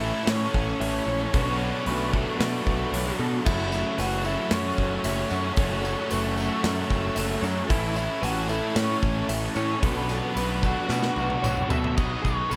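A growling, up-front electric bass with overdrive anchors this brooding, hazy shoegaze and dream pop excerpt, where a dark octave-fuzz lead guitar with analog delay carries the melody over a very quiet, airy detuned pad, a chorused clean guitar picking arpeggios, three overdriven rhythm guitars churning riffs in the background (one with reverse reverb, one sludgy and double-tracked), a big rock kit with bright cymbals and punchy kick that enters at 0.3 seconds and plays a fill from 10.9 seconds, and a jingly tambourine joining at 3.7 seconds, all cycling through Amaj7, Bm7 and F#m7 in a snug booth ambience.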